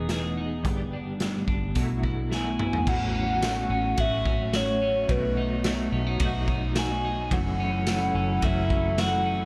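This dream pop excerpt opens with a warbling, nostalgic pad, two clean electric guitars and a dark, round, foam-muted bass, with a raw garage drum kit entering at 0.1 seconds. The floating, dreamy mood sits in A lydian at 108 BPM in a straight 4/4, with chords moving from Emaj7 through G and B7sus4 before settling into A6, B7 and F#m7. One guitar plays picked arpeggios dressed in subtle chorus and tape echo, while a second, recorded direct and compressed, sits in the background with tremolo and ensemble chorus. The drums sit up front with a pumping small-room sound, punchy kick, gritty saturation and a rolled-off top, and a fill at 2.3 seconds leads into the second section. At that same moment a hollow, woody clarinet-like synth lead enters to carry the melody, soft and full-bodied with vibrato, chorus, phaser and tape echo. Light reverb and studio ambience give the mix a gentle sense of space.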